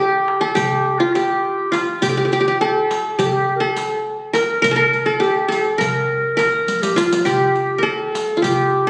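Captured on a phone in a moderately reverberant recital hall, with studio reverb added on top, this short fragment of a longer piece has a muffled top end and a soft, roomy halo. A hypnotic, melancholic Turkish makam ensemble piece in 9/8, it puts a bright-edged qanun with triple strings up front on the melody, played with fingerpicks and touched by tape echo, while a vintage-toned clarinet in classical style carries a second line. Beneath them, a crisp, metal-shell darbuka and a riq with dark jingles are both struck with hard hands, and a drum fill arrives at 6.7 seconds.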